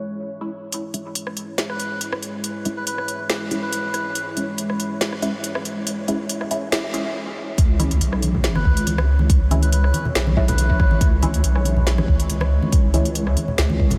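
A detuned, warbling pad with sustained, chorus-tinged chords opens this heavy, brooding half-time deep dubstep excerpt, soon joined by nasal, phased dub chord stabs with echo, a filtered house kit of smooth hats, rim clicks and a woody snare, and a breathy, reedy melodica with its own echo, all building to a brief stop at 7.2 seconds before the drop at 7.6 seconds brings in an up-front, wobbling sine-and-triangle bass, a layered electronic kick and soft, low-tuned congas in the background, all soaked in a huge, dreamy reverb.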